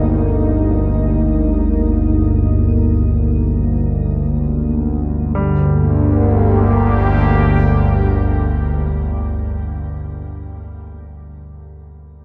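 A vast, echoing cathedral reverb surrounds this ominous dark ambient drone, which drifts in free time and is cut from a longer piece. Up front, a warbling, detuned analog drone with pulse-width modulation sits low beneath a full-bodied sawtooth pad whose filter swells and shimmer reverb carry sustained chords from Eb to Gm at 5.4 s, while a metallic singing bowl rings faintly. At 5.3 s a very quiet, polished baby grand piano enters with clear arpeggios that continue after the pad and drone have ended.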